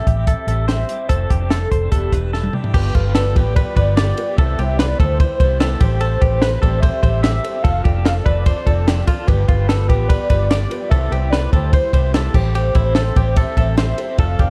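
A compact cocktail drum kit sits up front with a punchy kick and a high-tuned snare, rolling a fill at 2.3 seconds, beside a round, foam-muted electric bass in this bittersweet, wistful stretch of jangly indie pop in A minor at 147 BPM. A velvety, detuned synth lead with chorus, vibrato and digital delay carries the melody, while a bright, twangy direct guitar plays tremolo arpeggios over a slightly broken-up amped guitar bathed in lush chorus. From 2.7 seconds a woody, boxy upright piano with audible action noise joins in the background, and light reverb and a dark production frame chords that move through Am7, F6, G7 and Cmaj7.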